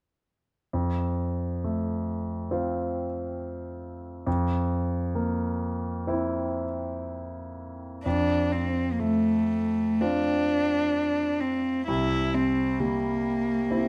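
An intimate bowed cello carries the melody from 8.0 seconds, played by a single player placed up front with light vibrato, a soft attack and an airy, sul tasto bow tone in its middle register. This is a serene, romantic classical duo for cello and concert grand piano in F major, moving in 4/4 at a slow 57-70 BPM with a flexible, rubato feel. The piano opens alone at 0.7 seconds as accompaniment, its clear, natural tone reaching down into a deep bass and sitting up front just beneath the cello. The harmony rests on F and C7 chords, settling back onto F as the cello enters for the second section. A moderate recital hall reverb and close, detailed microphones give the sound a sense of space while keeping the playing near, until the recording is cut from the longer piece at 13.9 seconds.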